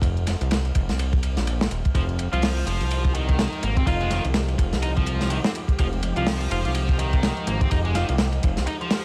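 Breakbeat with a funky, swaggering strut, built on a crunchy, saturated drum kit with dark cymbals and a tight kick sitting up front, layered with a soft electronic hi-hat ticking in the background, alongside a fat, detuned sawtooth bass whose filter sweeps evolve over a single Fm9 chord. At 1.9 seconds an overdriven, double-tracked electric guitar riff arrives with 12-bit sampler grit and dub echo, while a swirling, nasal pad pumps quietly behind it through phaser and chorus. From 2.3 seconds a bright alto saxophone with light vibrato drifts in the distance through an AM radio filter and dub echo, all set in a small room dusted with vinyl crackle.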